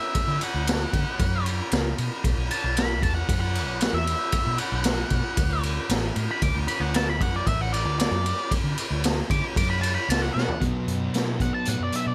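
Brooding and heavy, this 12-second cut from a longer blues rock power trio piece with a southern rock edge moves at 115 BPM in B minor, opening on an octave-fuzz lead guitar solo that runs from the start until 10.6 seconds over a gritty, saturated garage drum kit with a punchy kick and a dark, round, foam-muted fingered bass. After a drum fill at 10.3 seconds, a thick, double-tracked fuzz guitar riff enters at 10.6 seconds on a B5 chord. The sound is dry and close, with the drums sitting up front in a small room.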